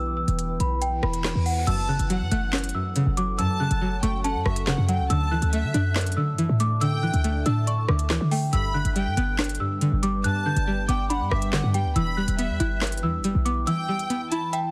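A bell-like celesta melody opens this tense, menacing half-time drill excerpt over a deep, dark detuned pad and a punchy, tight 808-style bass, with an electronic drum kit of woody snare, crisp hi-hats, handclaps, rim clicks and crash entering just after. A reverse cymbal rises into the full groove at 1.7 s, where a lush, smooth studio violin section with delay and a twangy, bright resonator pluck join the mix. The dense, heavily limited, dry master carries vinyl crackle, and the bass drops away at 13.7 s, leaving the upper parts to ring out.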